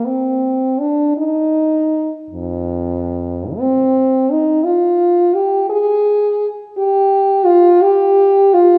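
Yearning and lonely, this brief cut from a longer classical piece features an unaccompanied French horn, mellow and distant with light vibrato, playing freely in 6/8 with expressive rubato at roughly 44-59 BPM, its line spanning F2 to Ab4 and sitting up front in a roomy recital hall reverb with a 1.7-second decay.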